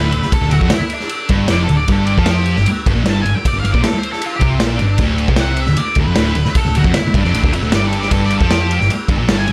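A thick, double-tracked fuzz guitar opens up front alongside a darker octave-fuzz lead and a round, amped hollow-body bass, with the drums joining at 0.1 seconds in this raw, swaggering garage rock cut. The rhythm guitar's bright, picked distortion drives the low riff, while the lead sits lower in the mix, carrying a shadowy, fuzzed melody above it. The short-scale bass anchors the bottom with a dusky, hollow tone. The vintage acoustic kit is punchy and close, with a medium-tuned snare, dark cymbals on the ride, and a rolled-off top, all breathing in a small, pumping room. Moving from Dm through Gm11 to bare D5 and G5 power chords in a straight four-beat feel, the whole passage sits under a light reverb.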